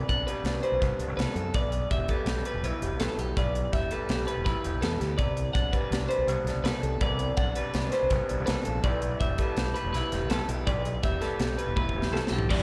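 Math rock with a midwest emo lean, this bright, wistful passage moves at 164 BPM in a straight 5/4, set in G major and tuned slightly flat of standard pitch, with harmony turning between Csus2 and G6. A clean, twangy twelve-string electric guitar spins compressed arpeggios high in its register, coloured by tape and slapback echo, while a dark, lo-fi electric guitar through a small old amp plays slightly broken-up accompaniment with its own slapback. Underneath, a growling fingered bass sits up front with punchy overdrive, and a crisp fusion drum kit enters at 0.1 seconds with an airy, polished sound, a high-tuned snare, punchy kick, hi-hat, toms and crash. A drum fill from 11.8 to 12.5 seconds leads into a crunchy, double-tracked overdriven guitar riff that comes in at 12.5 seconds just as the clip is cut from the longer piece. The whole performance comes across like a live gig heard through the venue's PA, with small room ambience and a recital hall reverb around it.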